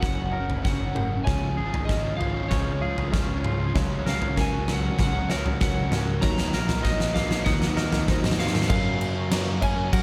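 A studio reverb frames this euphoric, cinematic post-rock passage, cut from a longer piece and moving at 97 BPM in a straight 4/4 in Gb major. Up front, a huge arena drum kit with bright cymbals, a fat snare and a punchy kick carries a drum fill through a build-up that runs from 0.0 to 8.7 seconds, over chords moving from Gb through Db and Ebm. A dark, slightly broken-up electric slide guitar, played with fingerpicks and treated with digital delay, carries the melody high above. Further back, a growling, overdriven fingered bass anchors the low end, while a double-tracked, overdriven semi-hollow guitar plays a picked riff and a clean, twangy electric guitar adds arpeggios through spring reverb and delay. A soft, felt-muted upright piano with a vintage, intimate tone also plays delayed arpeggios, and a very quiet phased analog pad, swirling and detuned with chorus, sustains chords beneath. 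At 8.7 seconds the music opens onto a Gbmaj7 as a new section begins.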